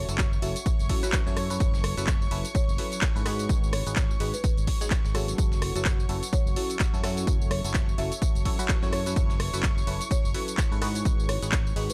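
A swung 127 BPM groove drives this soulful, energetic piano house clip, with a punchy, up-front electronic kick, a tape-toned house kit of handclaps, hi-hat, rim click and tambourine, and a very quiet, gritty breakbeat layer of hi-hat and snare, beneath a biting, phased FM electric piano riff, a growly overdriven fingered bass and a rich, earthy chamber string section carrying sustained chords with 12-bit sampler grit, all three pumping against the kick, while a mellow, woody soft-mallet marimba plays the melody in the background and a deep, dark ambient pad hums faintly over chords moving from B9sus4/F# through G#m7 and F#m7 in a dry, gritty hardware sound.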